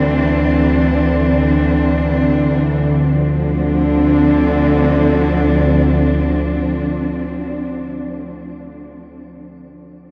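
Cavernous and desolate, this short fragment of dark ambient drone drifts in free time in D minor, where a tense, sawtooth-edged bowed-like drone with a noise layer, slow attack, vibrato and its own built-in reverb hums from D2 to D3 until 7.5 seconds beneath a lush, expressive cello section whose sustained chords with shimmer reverb move from Dsus2 to Dm at 3.1 seconds, both parts up front in a huge reverberant space with an 8.6-second decay.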